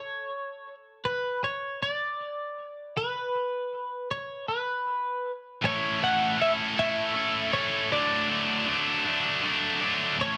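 Angsty and dark, this short rock excerpt in a straight 6/8 opens with a bright, clean twelve-string electric guitar carrying the melody alone, its compressed picked notes shimmering through lush chorus and plate reverb. At 5.6 seconds a heavy, double-tracked high-gain guitar crashes in up front with a distorted riff over A and then D chords, while the twelve-string keeps singing above it until the cut at 10.4 seconds. A moderate small-room ambience frames both guitars.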